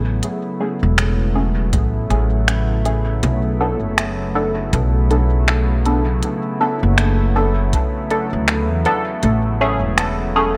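A woody, growly upright bass sits up front throughout this deep, spacious ambient dub excerpt, moving at 80 BPM in 4/4 with a swung sixteenth feel in B dorian. Around it, a warbling, lo-fi pad holds sustained chords with chorus and its own reverb, while muted, detuned chord stabs pass through phaser, analog chorus and dub echo. Crisp hi-hats and finger snaps from a produced electronic kit enter at 0.2 seconds, also trailing dub echo, and an overdriven, analog-sounding kick drum plays from 1.7 to 7.9 seconds. The harmony moves from Amaj7 to Bm7 and back to Amaj7, and a ringing, airy handpan slips in with arpeggios at 9.6 seconds, set in the background. The mix is echo-heavy with light reverb, giving the short passage a nostalgic, meditative air.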